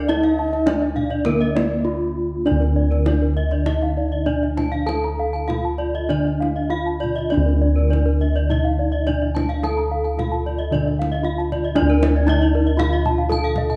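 A straight 4/4 pulse drives this shimmering, brilliant Balinese gamelan fragment from a longer piece: a bronze metallophone struck with a wooden mallet and touched by tape echo carries the melody over two more ringing metallophones spinning arpeggios, one played with a horn mallet in a boxy small-room sound and the other mid-forward, all three paired-tuned so their beats glimmer. Round, up-front bossed gongs hold the bass, and a tight, vintage, band-limited kendang adds hard-handed percussion. An airy, end-blown low xiao sings a tongued, vibrato second line in the background only through the first 2.1 s, overlapping a brief break from 1.6 s, all set in a moderate recital-hall reverb with a dark, warm production.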